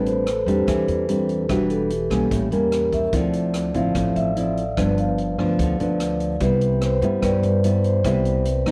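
Breezy and sunny, this short bossa nova excerpt in C major moves at 146 BPM, with a mellow, ringing vibraphone played with soft mallets taking a close, dry solo across the whole passage while a dark, thumb-plucked nylon-string guitar sits up front in accompaniment. Beneath them, a woody pizzicato upright bass anchors the harmony and a drum kit with a punchy kick, hi-hat and rim click joins at 0.1 seconds. The chords move from Am7 through Em9, A7b9, Dm9 and G7 to land on Cmaj7, all wrapped in light reverb and the warbling pitch drift of worn cassette tape.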